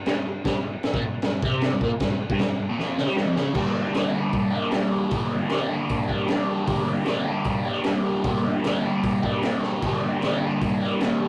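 A crunchy, double-tracked electric guitar opens this raw, menacing garage rock excerpt with a picked, overdriven riff in straight four, colored by a phaser and sitting up front. A gritty acoustic breakbeat kit joins almost at once, its high-tuned snare, tight kick, hi-hat and crash sounding dark and saturated with a rolled-off top, and drum fills arrive at 2.8 and 9.6 seconds as the music moves into a new section at 3.6 seconds. A moderate stone-room reverb and warm saturation give the recording a rough rehearsal-room character.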